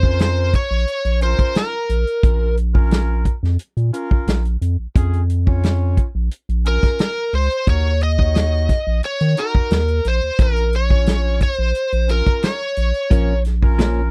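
A straight-eighth soul blues groove carries this soulful, mournful fragment of a longer piece: a punchy, up-front drum kit and a round, deep analog bass sit beneath mellow, vibrato-tinged horn chords, while an overdriven slide guitar plays a bright melody at the start and again from 6.7 seconds, and a direct-recorded clean electric guitar with subtle chorus adds compressed stabs from 13.1 seconds, all in a close 1970s-style studio sound with little reverb.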